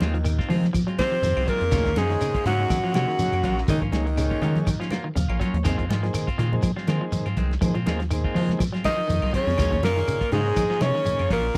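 A swung sixteenth-note afrobeat groove in 4/4 drives this intense, defiant cut from a longer piece. A rubbery, hollow square-wave bass sits up front with a dark, resonant filter pluck, over a dry, muffled soul drum kit of hi-hat, tight kick and medium-tuned snare, while thick-skinned congas, a grainy, distant shekere and woody claves fill out the percussion in the background. A bright, picked clean electric guitar plays stabs, a twangy guitar at the edge of break-up adds arpeggios, and an overdriven vintage combo organ with light vibrato comes in as accompaniment. A clear, punchy alto saxophone carries the melody, backed by gritty baritone and edgy, scooped tenor saxophone lines; the horns fall away at 4.9 seconds, when a transistor combo organ fill steps in, and return around 8.8 to 8.9 seconds. The harmony moves between Fm7 and Ebm9, and the close, 1970s-style studio sound carries little reverb.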